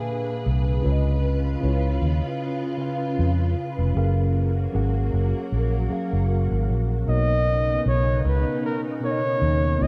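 A mellow tine electric piano and a silky, warbling string machine with ensemble chorus open this introspective, soulful neo-soul R&B fragment at 77 BPM in 4/4 with a gentle 16th-note swing and tuned to A4 = 436 Hz, joined at 0.5 seconds by a dark, round, foam-muted vintage fingered bass sitting up front, while a smooth, vibrato-laden flugelhorn takes the solo melody at 7.1 seconds as the chords move from A#7b9 through C#7 and F#maj7 to Bmaj9, all in a rough home demo mix with light reverb.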